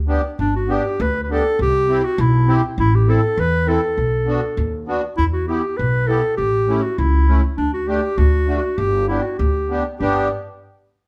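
Alpine folk from an alpine dance band, jolly and festive at 100 BPM in 2/4 with a rubato feel in G major, where a mellow, classical-style solo clarinet carries the melody up front over a woody, growly pizzicato upright bass and a reedy, sweet accordion with light tremolo tuning that joins at 0.1 seconds, all played live in one room with moderate large studio reverb as the chords move from G through C, Am, Bm, Em, A and Dsus4 to D and back to G in this short cut from a longer piece.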